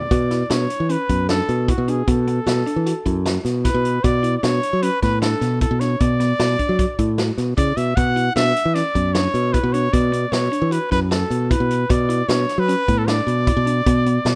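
A warm, lightly vibrato-tinged trumpet carries the melody up front across this brooding, tense progressive instrumental in 5/4 at 153 BPM in B minor, over a bright, punchy fingered electric bass, a woody, mellow synth pluck with chorus playing arpeggios in the background, and a vintage acoustic drum kit with a tight kick and rolled-off top, all moving through Bm7, D, Bm and D in a small-room home-demo mix cut from a longer piece.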